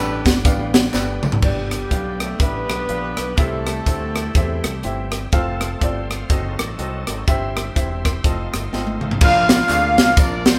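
A stone room with a moderate reverb gives this uplifting, soulful excerpt of uptempo gospel the feel of a band playing live together, swinging at 123 BPM in 4/4 over a progression that starts on G and arrives at Bb. A tight, mellow horn section in octave doubling carries the melody over a crisp, punchy fusion kit with a high-tuned snare, a bright fingered electric bass, a clear baby grand piano with short sustain, and a full, shouting tonewheel organ in the background turning through a slow rotary speaker with chorus vibrato, while distant tambourine and group handclaps sit low in the mix. At 1.4 s a breathy, distant tenor saxophone takes a jazz-style solo line with light vibrato and scooped notes, and the piano adds a fill from 7.8 s before the horns and handclaps return at 9.2 s.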